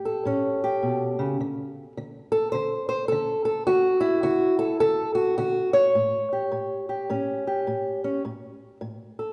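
A wet recital-hall reverb with a 1.7-second tail surrounds an up-front, fingerpicked old ladder-braced acoustic guitar, its dark, woody tone carrying the dull edge of old strings. This gritty, laid-back acoustic country blues swings at 105 BPM in 4/4 in A mixolydian, with the lone guitar ranging from A2 to C#5. It opens on A7, moves away from any set chord at 1.4 seconds, and settles back on A7 at 5.9 seconds before this short cut from a longer piece ends.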